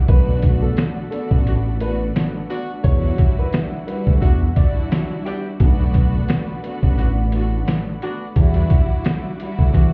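Boom-bap hip-hop excerpt in B minor at 87 BPM with a gritty, moody swing, built on a compressed, pitched-down sampler drum kit with a thumpy kick and a fat, detuned analog bass up front, while a woody upright piano carries the melody through delay until 4.7 seconds, a bowed string section with cassette-tape colour accompanies, a lush, nasal unison pad with chorus sustains the Bm7 and Em9 chords in the background, punchy horn stabs enter at 1.5 seconds, and the whole mix sounds muffled as if through a wall, with club reverb and vinyl crackle.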